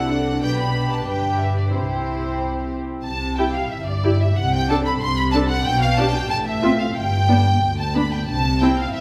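A full string orchestra opens together in a quick, graceful and cheerful classical-period movement in C major at 92 BPM in 2/4, with a clear, pure violin section carrying the melody above a dark, woody, lush second violin line touched with vibrato, a soft-attacked viola accompaniment, a rich cello section and a smooth-topped double bass sharing the bass, every section bowed sul tasto and set in the wet reverb of a recital hall, in a passage cut from a longer piece.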